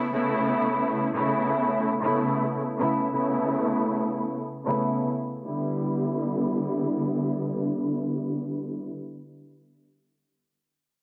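A swung sixteenth-note feel in four drives this brief, tough hip hop fragment, cut from a longer piece. A studio string section carries the accompaniment from 0.0 to 8.9 seconds: bowed, lush and expressive, with vibrato, portamento and a smooth top that sits up front. A filter sweep moves across the strings until 5.5 seconds, and cassette tape colouring plus high-pass and low-pass filtering lend the ensemble a shadowy, worn quality. The harmony rests on Aadd9 before shifting to Em7 at 5.5 seconds, deepening the brooding mood. A light, small-room reverb surrounds the strings, and the dense, heavily limited modern master keeps the sound compact and forceful.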